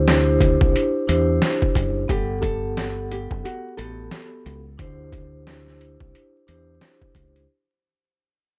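An overdriven, sampler-style boom-bap drum kit with a thumpy kick and a medium-tuned snare anchors this confident, warm 89 BPM hip hop fragment in swung 4/4, with a dark, round fingered electric bass and a ringing vintage vibraphone with slow motor vibrato moving through D9sus4 and Gmaj9, while a small fingerpicked nylon-string guitar with audible finger squeak adds a brief melody from 2.1 to 4.1 seconds, all in a dry, gritty recording with vinyl crackle that fades out across its 7.5 seconds.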